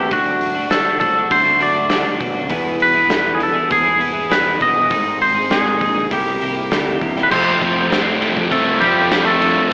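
Brooding and cathartic, this quiet-loud alternative rock excerpt moves at 100 BPM in a straight 4/4, with an up-front, twangy clean electric guitar carrying the melody over clean, compressed twelve-string electric arpeggios fed through digital delay, a growling overdriven fingered bass, and an oversized low-tuned acoustic kit with a boomy kick, dark cymbals and a gritty, pumping room sound. The chords shift from D through E, G# and C7 before landing on F at 7.3 s, where a sludgy, double-tracked distorted guitar riff with slapback echo enters. Lush hall reverb gives the mix a big arena scale, tinged with an AM radio character.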